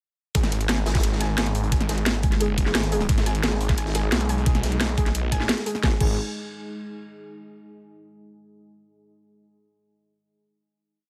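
Dark, technical drum and bass with a futuristic, tense mood, launching straight into a drop at 0.3 seconds: a snarling, growling distorted saw bass with tube saturation fires chopped phrases up front, over an overdriven knocking electronic kick and a tight drum kit of cracking snare, bright hats and crash, with a gritty, saturated looped breakbeat buried in the background. Behind them, a soft, round pluck cycles a 3-step arpeggio loop that drifts against the bar through ensemble chorus and digital delay, and a deep, moody ambient pad enters at 1.5 seconds with slow-attack sustained chords, both pumping to the sidechain. At 5.8 seconds the drop gives way to a final chord as the parts fall away.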